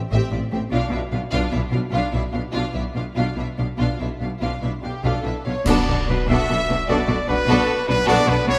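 A heroic adventure film score in a lilting 12/8, this short cut from a longer piece has an adventurous, swashbuckling mood. Two violin sections carry the melody and a second line beneath it, their bowed tone lush and smooth with vibrato, while a distant, expressive viola section fills in the accompaniment. Cellos, focused and sitting in the background, join a rich, up-front double bass section to anchor the low end, shifting from Am7 to Bdim harmony. At 4.8 s a solo trumpet enters up front with classical-style stabs, and at 5.7 s bright, close and dry clash cymbals and concert bass drum mark a full-band accent as the music moves to a new section on Bm7. A moderate scoring-stage reverb gives the ensemble space, though lossy compression artefacts colour the sound.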